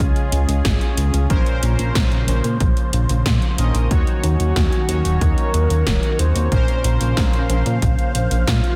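Synthwave at 92 BPM in Bb minor, cinematic and moody, this short cut from a longer piece sets a swirling, phased analog pad with sidechain pumping and bold, brassy synth stabs over an up-front glossy chorused bass, a punchy electronic kick and 80s pad drums with gated snare and metallic hats, moving through Db, Bbmadd9 and Ebm7 as a round, octave-layered synth lead with vibrato and digital delay enters at 3.9 seconds, all wrapped in light digital ambience and a dense, heavily limited master.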